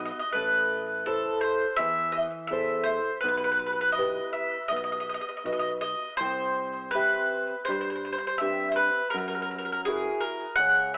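Passionate and romantic, this Italian folk serenade excerpt moves with a rubato feel through chords including Am, Em/B, C and F#7. Up front, a round, picked mandolin with double strings carries the melody through tape echo, while a full-bodied nylon-string guitar with a deep classical tone supplies fingerpicked accompaniment. A bright, barky tine electric piano, lightly overdriven through a combo amp, holds the bass line, and the ensemble sits in a moderate recital hall reverb yet arrives with a telephone sound.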